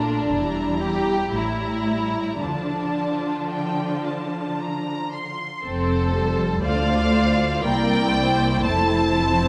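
A slow, melancholic, elegiac passage for string orchestra opens with all five sections sounding together in a flexible triple metre, cut from a longer romantic movement. High above, the first violins carry the melody with a lush, vibrato-laden tone that sounds somewhat distant. Closer and more up front, the second violins sing a smooth-topped inner line with light vibrato, while the violas fill in the accompaniment, colouring it with expressive portamento. Underneath, the cellos, with their soft attack, and the deep, rich double basses anchor the bass. At 5.6 s the harmony settles into a new section, and the strings sustain their mournful phrasing through to 9.5 s, bathed in the generous reverb of a concert hall.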